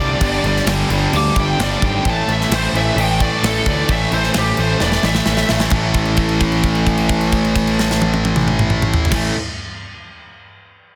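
With a dense, heavily limited modern master and light studio reverb, this menacing, heavy hard rock cut from a longer piece drives at 131 BPM in 4/4 over G5 and A5 power chords, as a dark, distorted bluesy lead guitar with slapback echo solos until 5.5 s over bright high-gain and warm, background overdriven rhythm guitars, an up-front fuzz-toned picked bass, and a tight, polished metal drum kit with airy, big-room ambience and bright cymbals whose fill at 4.8 s leads into a held note from 5.7 s.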